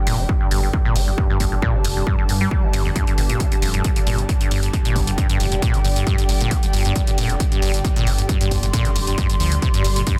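A straight 4/4 pulse drives this dark, intense peak-time techno cut from a longer piece, with a heavy, layered, tape-warm kick arriving at 0.3 seconds to join overdriven analog hi-hats already in motion. A deep, rumbling detuned saw bass beats beneath a squelchy, resonant acid saw riff with filter sweeps and dub echo, while an evolving analog drone sits in the background under an airy, breathy, nasal pad, both chorused, and every part but the kick pumps against the sidechain. Light digital ambience surrounds a dense, heavily limited modern master.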